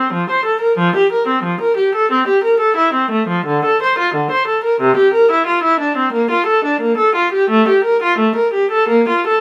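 Close, detailed microphones capture this short fragment in a light reverb, with the instrument placed up front. It is a classical movement in a baroque suite style for a single unaccompanied viola, bowed by one player in a period manner. The viola's gut-string tone is reedy and rich, touched with light vibrato, and its line spans from C3 to C5. The feel is flowing and serene, with a rubato pulse in four that lets the phrases breathe. The viola plays alone for the full 9.4 seconds.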